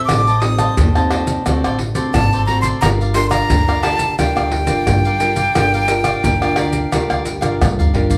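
Samba and choro in G minor at 88 BPM, a sunny, joyful excerpt from a longer piece, with a breathy, bright jazz flute carrying the melody up front, its chiff and vibrato clear, over crisp picked cavaquinho and fingerpicked classical nylon-string guitar moving through Am7b5, D7 and Gm7. A woody, dark pizzicato upright bass holds the low end while maracas, a deep surdo, pandeiro and tamborim, played with hard hands, sound vintage and band-limited up front, closing with a drum fill from 7.4 seconds. The band plays live in one room with a moderate large studio reverb.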